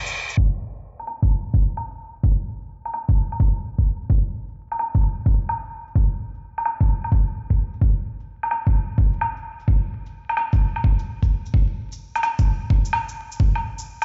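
Layered electronic shaker and woodblock open this ghostly, nocturnal future garage excerpt at 0.1 s, placed up front with a small-room tone, and a knocking, layered electronic kick drum joins at 0.4 s at 129 BPM in 4/4 with a 66% swing on the 16ths. A filter sweep runs from 0.4 s to the end at 14.0 s. The whole sound is dark and muffled, with nothing above 7.8 kHz, vinyl crackle, and the feel of a big sound system playing in a bare stone room, though little reverb clouds the parts.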